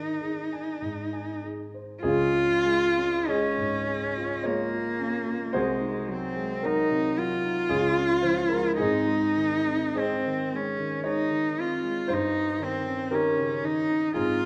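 A rich, expressive solo cello sings the tender, lyrical melody up front with vibrato, soft attacks and portamento over a dark, mellow grand piano with deep bass, in this slow romantic classical excerpt in Db major that moves in a rubato 3/4 at 46-59 BPM within a moderate recital hall reverb.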